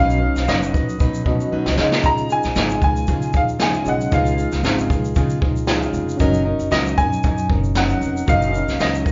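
A live-in-one-room recording with light reverb and a soft, rounded top end carries this carefree acoustic pop excerpt at 115 BPM in Db mixolydian, where a clear, slightly detuned upright piano sings the melody over a full-bodied fingerpicked steel-string guitar, a reedy, slightly out-of-tune electric piano with fast tremolo tucked in the background, a growly pizzicato upright bass, and an up-front brush kit of boomy kick, snare and shaker that enters at 0.1 seconds and plays a fill at 1.5 seconds, with the chords moving from Cbadd9 to Dbadd9 and settling on Gb6 at 6.2 seconds.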